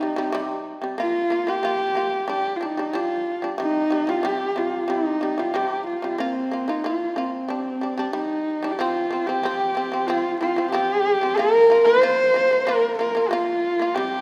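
Mongolian folk in a windswept, solemn mood, this passage is cut from a longer piece and tuned slightly below standard pitch, with a second section arriving at 8.8 seconds. A husky, boxy horsehead fiddle, bowed on horsehair strings, carries the expressive melody up front with vibrato and portamento, while a powerful fretless shamisen plays plectrum-plucked arpeggios with a percussive, buzzing edge. Both players sound close and present, set in the moderate reverb of a scoring stage.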